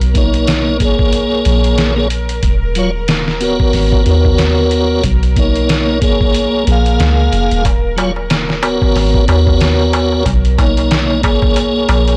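A swung, gritty sampler-style drum kit with a thumpy kick sits up front over a deep, round 808-style bass in this hypnotic, cinematic trip hop cut, while a piping tonewheel organ with key click, chorus vibrato, tremolo and tape echo carries the chords, a tense string-like drone hangs in the background, and a crisp metal-shell darbuka joins at 7.7 seconds, the recording itself blown-out and overdriven with vinyl crackle.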